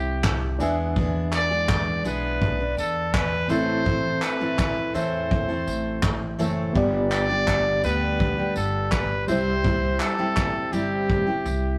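A rough rehearsal-room recording with tube saturation and a moderate stone-room reverb frames this short, sunny and heartfelt acoustic pop excerpt at 83 BPM in 4/4, moving through C, E7, Am and G. A bright, vintage trumpet carries the melody up front over a full-bodied picked steel-string acoustic guitar, a reedy electric piano with fast tremolo sitting in the background, and a woody, thumpy pizzicato upright bass on gut strings. A soft brush drum kit, dark and smooth with a punchy kick, handclaps and tambourine, enters at 0.2 s.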